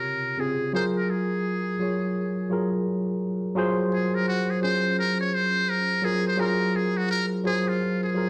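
Warm and soulful, this R&B passage cut from a longer piece moves at 85 BPM with a lazy 16th-note swing, settling in Gb lydian as the harmony shifts from Dbmaj9 to Gbmaj9. A trumpet with a metal mute carries the melody as a jazz-style solo across the full 8.3 seconds, its tone buzzy and thin with a soft attack and light vibrato. Beneath it, a worn, slightly out-of-tune tine electric piano sounds through its built-in speakers, with both parts up front in a live-band room bathed in wet studio reverb.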